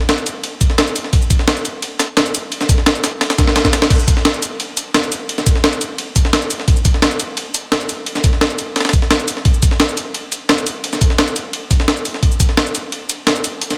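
The recording is dry, a short cut from a longer drum and bass track at 173 BPM in a straight 4/4, with a rolling, lush mood. Two sampler-style breakbeat kits share the groove. Up front, a compressed, pitched-up kit with a high-tuned snare, crash cymbal, hi-hat and shaker carries the main pattern, its sound re-recorded in a large room. Behind it sits a tape-warm kit with a medium-tuned snare and ride cymbal, its cymbals and snare thinned by a high-pass filter, and it stays in the background. A gritty, thumpy electronic kick, also sampled and placed up front, joins at 0.6 seconds and plays until 12.5 seconds, with a brief drum fill at 3.4 seconds.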